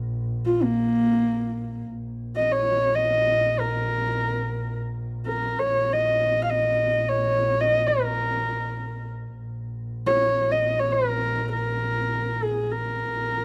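Solemn and vast, this fragment of Mongolian folk music unfolds in free time as a husky, up-front horsehead fiddle carries the melody from 0.5 seconds with soft attacks, light vibrato and gliding portamento over a veiled, muted double bass drone, all captured in a dry, close 1970s-style studio sound with light small-room reverb.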